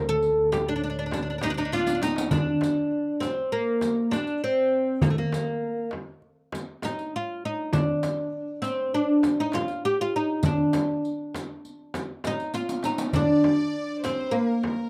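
The rhythm moves in a straight 9/8 at 200 BPM in eighths, carrying this melancholic, longing fragment of a Turkish makam piece cut from a longer performance. The oud leads throughout with a bright, woody, plectrum-plucked melody on fretless double strings, sitting up front between A3 and A4. A single bowed double bass holds a boxy, focused D2 drone with vibrato beneath the opening, stopping at 2.4 seconds. The percussion runs almost the whole way: a crisp, metal-shelled darbuka, a deep, band-limited vintage frame drum, and a more distant riq with bright jingles, with drum fills at 1.7 and 12.5 seconds. At 13.1 seconds a pure, floating studio violin section enters with a bowed sul tasto second line between Bb4 and D5. The sound is a dry, close 1970s-style studio recording touched by light reverb.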